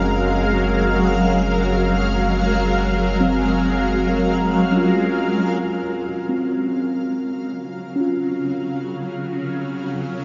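This peaceful ambient piece in free time, set in Gb lydian, opens on a Gbmaj9#11 chord: an ethereal pad sits up front with bright, octave-up shimmer, chorus, phaser and its own reverb. Beneath it, a mellow tine electric piano plays clean arpeggios through delay, a deep, ominous triangle-and-sawtooth bass drone rumbles on Gb1, and a very quiet analog drone evolves with detuned pulse-width movement. Both drones drop away around 5.6 and 5.7 seconds as the harmony settles onto Gbmaj7. From 5.6 seconds the pad fades in, carrying the second half with the electric piano. A huge, wet reverb with a long tail bathes the mix, and its top end is rolled off for a soft, warm glow.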